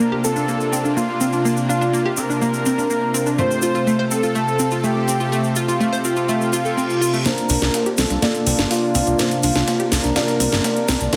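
Progressive house at 124 BPM with an expansive, hopeful mood, this excerpt opens on a bold, detuned unison lead melody with digital delay over a lush supersaw pad through a low-pass filter, a round, chorused analog pluck tracing arpeggios, soft felt-muted upright piano stabs with audible action noise in the background, and a grainy tube shaker, moving from C9sus4 to F/C. A reverse cymbal at 6.5 seconds leads into a build-up at 7.3 seconds, where an up-front house drum kit with a cracking snare and metallic hats enters alongside a gritty, pitched-up breakbeat sampler-style kit in the background, a drum fill, and a filter sweep on the piano. A thick, wave-folded analog bass joins at 7.5 seconds, all set in a moderate scoring-stage reverb under a dense, heavily limited modern master.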